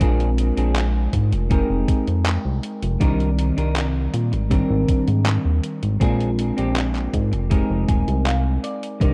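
Vaporwave at a relaxed 80 BPM in F dorian, this short excerpt from a longer piece feels woozy and nostalgic, its echo-heavy mix carrying the faded sheen of cassette tape. A round, dark FM electric piano supplies the accompaniment through subtle chorus and dub echo, moving through lush extended chords such as Bb9, Fm11 and Abmaj9#11. A clean, fingered semi-hollow electric guitar plays a riff in the same chorused, echoing space and adds a fill from 7.5 to 9.0 seconds. Up front sits a glossy, retro synth bass with a plucky filter and tube saturation, joined by a thumpy electronic kick drum. A detuned 8-bit drum machine adds handclaps and hi-hat with a sampler-style, tape-warm tone, both drum parts set in studio reverb. At 9.0 seconds a silky string machine slips in, barely audible, just as the excerpt closes.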